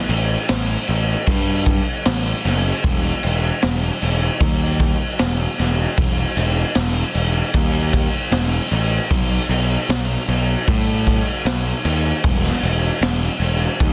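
From 0.1 s, a raw garage drum kit and a fuzz-laden, picked electric bass enter together, setting a brooding, melancholic tone in this short cut from a longer rock piece that leans toward shoegaze and dream pop. The drums sit up front with a punchy kick, a medium-tuned snare and dark crash cymbals, and their small, pumping room is saturated into a gritty sound with a rolled-off top. The bass is also placed up front, overdriven and round, moving between E1 and A2 with a warm fuzz. Both parts play in a straight 4/4 feel until 13.9 s, holding a single section throughout. The sound is close and dry with little reverb, and the master is dense and heavily limited in a modern style.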